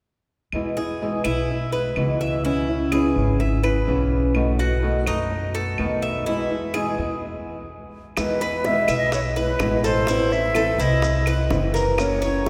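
This relaxed Cuban son and guajira excerpt opens at 126 BPM in E major with a dark, fingerpicked flamenco guitar and a thumpy, gut-strung pizzicato upright bass up front, woody claves in the background, and a bright, metallic Cuban tres picking arpeggios on its doubled strings from 0.8 seconds. After a stop at 7.2 seconds, a reedy, airy concert flute takes the melody with a straight, tongued tone at 8.2 seconds, joined by tight, high-tuned bongos heard very quietly and grainy, vintage-sounding maracas. The whole band sits in the long, wet reverb of a church or concert hall, moving from E through C#m7 and B7 to a lusher Emaj7 and Amadd9 before an F#7.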